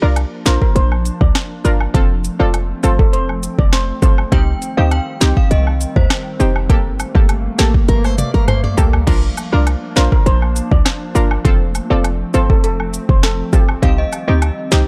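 An up-front electronic afro-pop drum kit, with its deep kick, sharp snare and crisp hats, drives this bouncy, sunny dancehall excerpt alongside a punchy, tight 808-style bass and close, dry woodblock and cabasa. A shimmering steel pan played with hard rubber sticks carries the melody through tape echo over a round, warbling analog pluck and an ethereal FM pad, both pumping with the sidechain, while a ringing, inharmonic synth chime takes a second line at 4.3 seconds. A fingerpicked nylon-string guitar adds brief classical arpeggios from 7.9 seconds during a drum fill, all set in a dark production with little reverb.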